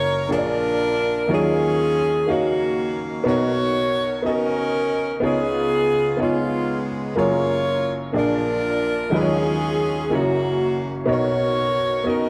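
This gospel passage, cut from a longer piece, opens with a saxophone section and an upright piano sounding together from the first moment, setting a reverent, uplifting mood in a slow 6/8 at 61 BPM in F# major. The close-miked saxophone section carries the melody with a tight, jazz-style blend and vibrato, sitting up front from G#3 to C#5. Beside it, the upright piano supplies the accompaniment across a broad span from F#1 to E#5, its woody, intimate tone bringing audible action noise that lends it a natural presence. The harmony moves through rich extended chords such as D#m9, Bmaj9, C#9 and F#maj9, touching F#7 before arriving at Bmaj9 near 11.1 seconds. A wet concert hall reverb with a 1.7-second decay surrounds both parts, and the overall production leans dark and warm.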